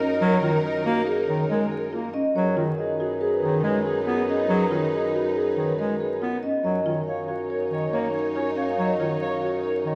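Hypnotic and urgent, this short cut from a longer minimalist classical piece moves at 140 BPM in a straight 5/4, its harmony shifting from F#69 to B69 over an F# bass at 2.4 seconds and to D#m7 over F# at 6.6 seconds. A metallic, ringing vibraphone played with medium mallets carries the melody, its fast motor vibrato giving a dark, smooth shimmer, while a mellow, distant clarinet sings a second line. A soft-malleted marimba with woody padauk bars spins round, airy arpeggios in the background, and a dark, lush symphonic string section holds even, bowed chords with vibrato and a smooth top. Low down, a close-miked bassoon with light vibrato anchors the bass on a single F#, and a clear bass clarinet with a soft attack enters at 0.2 seconds with accompaniment that sits up front in the mix. A moderate scoring-stage reverb with a 2.0-second decay lends a roomy space to a recording made in a church or concert hall, and vinyl crackle sits over the sound.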